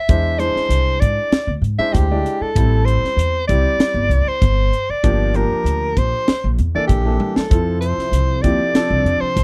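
A clear, smooth-topped soprano saxophone leads with jazz-style vibrato from the very start of this slick, bright electric jazz fusion excerpt at 97 BPM with a light sixteenth-note swing, joined at once by warm, short-sustained baby grand piano, a woody, thumpy pizzicato upright bass up front, and a crisp fusion kit with high-tuned snare and tight kick in a dry, close 1970s-style sound, while a drum fill at 7.2 seconds ushers in a brassy, detuned sawtooth pad with chorus and tremolo swelling softly in the background at 7.5 seconds over chords moving from Eaug7 through Am7 and Gm7 to Fmaj7.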